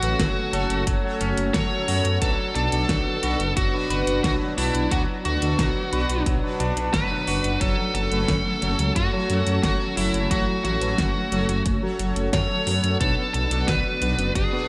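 Synthwave in F# minor at 89 BPM, cinematic and moody, this excerpt moves between F#m and Bm under a dark, overdriven lead guitar melody sitting up front with delay, slapback echo and shimmer reverb. A deep, rumbling detuned saw bass pumps against a punchy electronic kick and a pop kit's fat snare and metallic hats, while a thick, warbling unison pad breathes in the background and bold, brassy analog synth stabs add filter sweeps and vibrato. A slightly broken-up, twangy electric guitar plays arpeggios until 7.6 seconds, when a clean, mellow electric guitar riff with lush chorus takes over, all inside a big arena-style hall.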